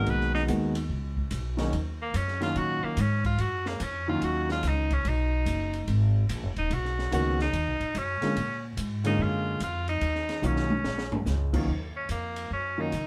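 A bright, punchy tenor saxophone solos with vibrato over an intimate grand piano and a woody pizzicato upright bass in this swinging, late-night small-group bop excerpt in Eb minor at 145 BPM, where the piano briefly drops out between 4.6 and 7.1 seconds, and an acoustic drum kit with dark cymbals, a high-tuned snare and a boomy kick plays a fill at 10.4 seconds before the solo ends at 11.7 seconds, all captured live in one room with moderate reverb.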